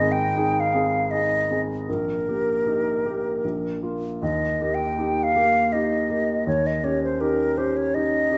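A hollow, airy concert flute and an open-sounding baby grand piano begin together in a tender, lyrical romantic classical duo in E-flat major, moving in a rubato 3/4 at around 76-82 BPM. The flute carries the melody up front with vibrato and a crisp attack, while the piano's long-sustaining accompaniment moves from A-flat through E-flat over B-flat to a closing E-flat seventh. A wet recital hall reverb surrounds this brief 8.4-second passage taken from a longer piece.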